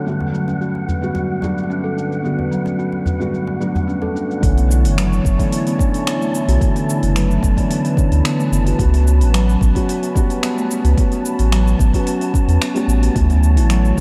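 A soft, felt-muted upright piano with audible action noise, a smooth chorused analog pad under a filter sweep, a ringing steel tongue drum playing arpeggios and an airy, breathy wind-like texture open this meditative, earthy organic downtempo piece at 110 BPM in B minor, joined almost at once by an overdriven deep house kit of cabasa, finger snaps and metallic hats plus a close, dry djembe, before a round sine sub bass and a deep, tape-warm electronic kick arrive at 4.4 s as the chords move from Gmaj7 through Bm11 and A13 to Dmaj7, with sidechain pumping on the piano and pad in a dark production with light digital ambience.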